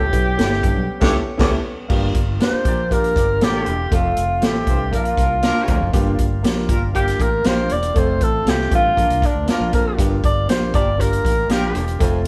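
A punchy alto saxophone with light vibrato leads this passionate, urgent excerpt of uptempo 1960s-style soul at 119 BPM in G minor. It sits up front in a roomy stone space and takes a solo from 1.9 seconds onward. Beneath it, a breathy baritone saxophone with a soft, subtoned attack works a low riff in the background, while a distant horn section joins at 1.0 seconds to carry a second line. A round, dark fingered electric bass and a swinging big-band drum kit with a boomy kick and a rolled-off top drive the straight 4/4 feel, and the band hits an accent just before the solo begins. A vintage, intimate grand piano with audible action noise fills in the accompaniment, a reedy, very quiet tonewheel organ holds sustained chords with its rotary speaker stopped, and the harmony moves from an opening A7 through Gm7, F and Bb, with the sound of a group playing live together in one room.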